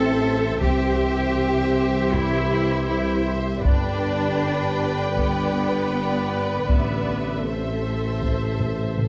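A dark, warm scoring-stage sound frames this relentless, epic orchestral film-score fragment in A minor at 79 BPM, where lush bowed violins with vibrato carry the melody over a smooth second violin line, viola accompaniment with expressive portamento, a rich cello section and woody double basses joined by a distant, mellow tuba on the bass, while a very quiet French horn section and soft-attack trombones hold sustained chords through Am, C and G, and a close, hard-stick taiko ensemble drives in from 0.6 s to a fill at 8.6 s.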